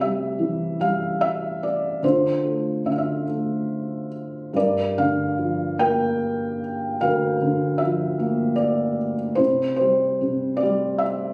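Captured on a phone in the room, the recording carries a moderate recital-hall reverb that lends the playing a soft, roomy halo. This is a lyrical classical solo piece for felt-muted upright piano, cut from a longer work, and its mood is melancholic and dark. The piano sits up front and sounds intimate and mellow, its thick felt dulling the hammers while the mechanical action noise stays clearly audible. Moving in a gentle three-beat metre with a free, rubato feel, the playing spans from deep bass notes up into the upper middle of the keyboard. The harmony drifts from C to Dm7 at 2.0 seconds, settles on Gm7 at 4.5 seconds, and returns to C before the passage ends at 11.3 seconds.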